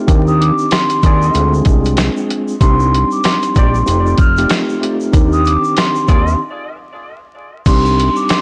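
The recording sounds blown-out and overdriven, with vinyl crackle over a gritty, moody boom-bap hip-hop groove in a swung feel, cut from a longer piece. A sampler-style drum kit sits up front, compressed and pitched down, with a thumpy kick, a medium-tuned snare, hi-hat and crash cymbal. Beside it sits a fat, saturated analog bass built from detuned sawtooth, square and sine tones with a wave-folded edge and a filter sweep. A mellow tine electric piano, clean and heard as if through built-in speakers with a cassette tape colour, carries the chords, while a grainy tube shaker stays in the background. Up high, a vibraphone played with soft mallets and the motor off rings with a metallic shimmer and tape echo as the melody. A dark, vintage horn section adds tight jazz-style stabs with light vibrato from 1.0 to 6.3 seconds, just before a break from 6.4 to 7.7 seconds.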